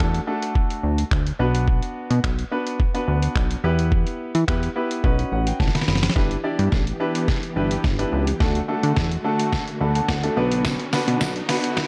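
A punchy, funky analog bass with a sawtooth pluck pumps against the sidechain up front in this energetic, driving dance-pop excerpt at 107 BPM, joined by a clear, polished baby grand piano that also pumps and adds fills, and a muffled, pitched-down sampler-style drum kit with a thumpy kick, fat snare, hi-hat and finger snaps. At 6.2 seconds a build-up begins with a filter sweep and running drum fill, as a vintage string machine with violas enters on very quiet, slow-attack sustained chords over a G6, D, Bm progression. A very quiet electronic riser arrives at 9.2 seconds and a jingly tambourine sits in the background near the end, all within a dark, lightly reverberant production.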